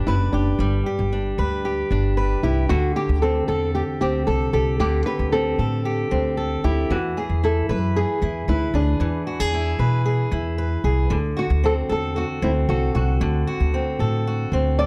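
A straight 4/4 pulse at 114 BPM carries this carefree, easy-going acoustic pop excerpt, tuned to A4 = 439 Hz and moving through G, D7sus4, E and D7. A small, dusky nylon-string guitar plays the thumb-plucked melody with plate reverb and delay over an up-front, fingerpicked steel-string acoustic guitar with a warm concert tone. A woody pizzicato upright bass joins at 0.1 s, also up front. The whole sits in a dark, lightly reverberant production.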